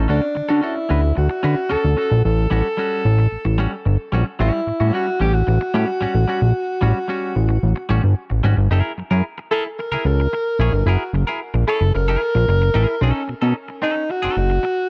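This funk excerpt has a cassette-tape grain and a studio reverb, giving it a gritty, playful character at a straight 111 BPM in 4/4. A fat analog bass sits up front in the mix, its saturated, sustained tone shaped by a filter sweep. A clean, picked semi-hollow electric guitar plays accompaniment lower in the balance, its compressed hollow-body sound colored by a warbly pitch drift. An alto saxophone carries the melody in a roomy, jazz-style voice, with a soft attack, light vibrato, scooped notes and a tape echo trailing its phrases. The harmony moves from Dmaj7 to A6. At 8.7 seconds the saxophone breaks into a solo over F#9 and then B9, and the recording is cut from a longer piece.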